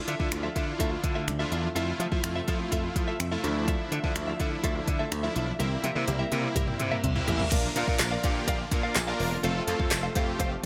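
A straight 4/4 groove at 125 BPM drives this carefree, upbeat dance-pop excerpt in F major. An up-front deep house kit sets the pulse, with a deep kick, woody snare, smooth hats, finger snaps, handclaps, toms and crash. Punchy slap bass sits close behind with sidechain pumping, while a fat, warbling sawtooth polysynth and a lush, nasal unison pad in the background carry the chords with chorus and the same pump. A clean, compressed electric guitar picks a riff with subtle chorus, and a very quiet FM pluck with a round, mallet-like tone plays arpeggios until 7.5 s. A drum fill starts at 5.6 s, and a reverse cymbal and downlifter enter at 6.9 s, leading the harmony from Dmadd9, Fmaj7 and C7 into Bb and F, where a faint, jingly tambourine briefly joins under light reverb.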